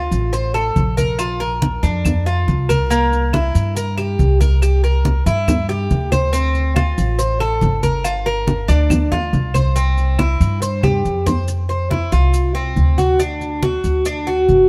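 A picked Cuban tres, metallic and partly octave-doubled, sits up front with arpeggios in this sunny, danceable Cuban son and guajira cut from a longer piece. A thumpy, woody pizzicato upright bass anchors it alongside low-tuned, thick-skinned congas played with hard hands, grainy maracas in the background and small-room claves that stop at 11.0 seconds, partway through a drum fill that leads into a new section at 11.5 seconds. Light reverb sets the group a little further back in the room as the chords move from a rootless Dm7 through Bb, C7 and Gm7 before closing on F5 and D.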